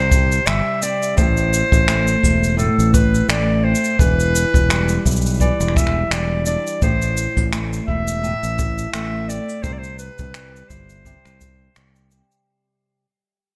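Folktronica excerpt with an intimate, delicate mood and a gentle swung feel, where a bright, soft-edged clarinet carries the melody through tape echo over fingerpicked flamenco guitar arpeggios roughened by vintage 12-bit sampler grit, a growly overdriven fingered electric bass, a boomy, distant kick and roomy cabasa and finger snaps with a rolled-off top, all moving through C, Am and Em7 as the piece fades out from 4.9 seconds.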